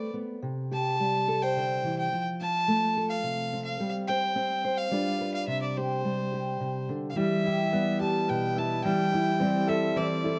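Bathed in a wet, large-studio reverb, this brief pastoral acoustic folk passage in 3/4 pairs a reedy, gut-toned bowed fiddle carrying the melody up front with a dark, woody fingerpicked steel-string guitar on old strings, until a brilliant upright piano with audible action noise and long sustain joins with arpeggios at 7.2 s.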